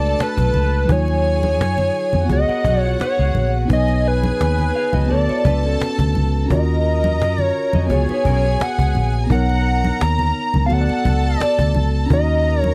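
Romantic and smooth, this lush 1970s-style soul fragment, cut from a longer piece, sets a hollow, woody square lead with chorus up front over a round, foam-muted fingered bass, a snappy cajon, ringing congas in the background, a worn, slightly out-of-tune tine electric piano and a dark sul tasto string section, while a twangy, slightly broken-up guitar through a small old amp adds a riff from 2.5 to 9.3 seconds, all in a dry, close small-room sound over chords moving from D6 through D#m9 and C#7sus4.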